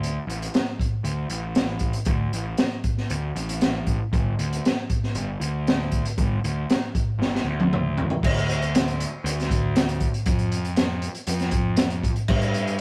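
A crunchy, gritty breakbeat drum kit with a punchy kick, high-tuned snare and dark cymbals drives this trippy, mysterious psychedelic rock excerpt at 117 BPM alongside an overdriven fuzz picked electric bass in a rough rehearsal-room recording with light reverb, and a drum fill from 7.2 to 8.2 seconds leads into a new section.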